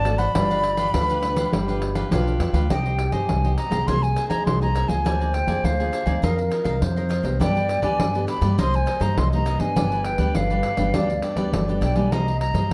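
Bittersweet and yearning, this samba and choro excerpt sets a pure, soft-attacked silver concert flute melody over a breathy, unsteady alto flute second line, with crisp picked cavaquinho and dark, full-bodied fingerpicked nylon-string guitar (finger squeaks audible) in accompaniment, a woody, thumpy pizzicato upright bass up front, and jingly, soft-handed pandeiro entering at 0.1 seconds, set in a moderate studio reverb.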